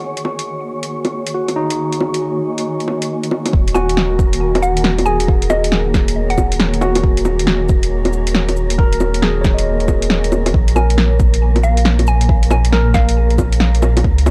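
This future garage piece opens in Eb minor on a barky tine electric piano, bright and lightly overdriven through a combo amp with subtle chorus and analog delay, set against a cloudy, blurred granular pad and an airy, breathy wind-like noise texture in the background. Both the keys and the pad pump with the sidechain, and the harmony rests on Ebm7. A deep house kit of bongos, cabasa, metallic hats and a punchy snare sits up front, overdriven and treated with studio reverb, driving a swung 4/4 groove at 137 BPM. At 3.5 seconds a round sine sub bass and a deep, overdriven electronic kick arrive together, and at 3.7 seconds a woody, mallet-like FM pluck begins a high melody coloured by chorus, phaser, cassette tape and analog delay. The chord shifts to Bbm7 at 10.5 seconds, and the pluck returns shortly after. The mood is melancholic and ghostly, with a dry, gritty, tape-worn character, in a fragment cut from a longer piece.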